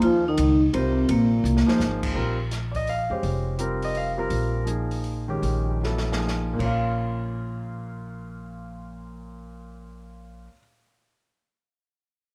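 Cool, spiritual modal jazz in a swung 3/4 in Bb dorian, moving between 117 and 168 BPM and slowing partway through, in this excerpt from a longer piece. A ringing, metallic vibraphone with slow motor vibrato carries the melody over a whispered, breathy trombone second line with slapback echo, both stopping at 1.8 seconds. An up-front concert grand piano with deep bass and a woody, growly pizzicato upright bass continue to about 10.6 seconds, while an airy drum kit with dark cymbals and a boomy kick adds fills before dropping out at 6.7 seconds, all set in a moderate spring reverb as the harmony moves from Bb9sus4 to Bbm.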